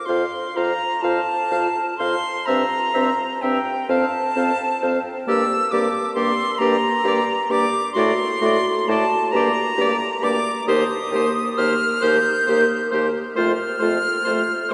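Heavy cathedral reverb fills a church or concert hall around this serene excerpt from a slow romantic movement for wind quintet in F major, moving in 6/8 at 44 BPM with rubato and uneven beats. An airy concert flute carries the melody up front with vibrato and a crisp attack, over a smooth-topped oboe second line, a bright clarinet in the background and a distant French horn with a soft attack. A mellow bassoon with light vibrato holds the bass as the harmony moves from F through G minor and returns to F at 13.4 seconds.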